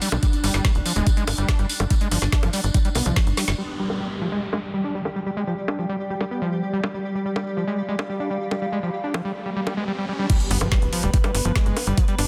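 A straight 4/4 pulse drives this intense, alien psychedelic trance fragment, cut from a longer piece, with a knocking, overdriven kick and a tight, nasal sequencer bass sitting up front before falling away shortly after 3 seconds and returning at the drop at 10.3 seconds. Throughout, a squelchy, resonant acid bass riff with distortion, dub echo and filter sweeps churns alongside a garage drum kit of woody snare, metallic hats, bongos and crash, all low-pass filtered and overdriven. Also present are pulsing, sidechain-pumped gated chords with detuned triangle tones and 12-bit sampler grit, plus a jingly tambourine in the opening seconds. In the middle stretch, a dark, warbling, lo-fi tape-like pad joins a downlifter and a riser, with an impact landing at the drop, all over a dense, heavily limited master with light reverb.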